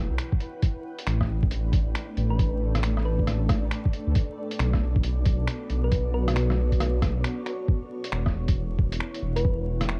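A swung 4/4 future garage groove from a muffled, thumpy electronic kick and gritty lo-fi snaps, hi-hat and rim clicks sits under a deep, rumbling detuned saw bass and a cloudy granular pad that both pump with the sidechain, while an airy, wind-like noise texture drifts in at 1.4 seconds and a round, tine-like thumb-piano pluck with chorus, phaser and tape echo enters at 2.3 seconds, all in a dark, nocturnal, ghostly mix with vinyl crackle and a brief break at 7.2 seconds.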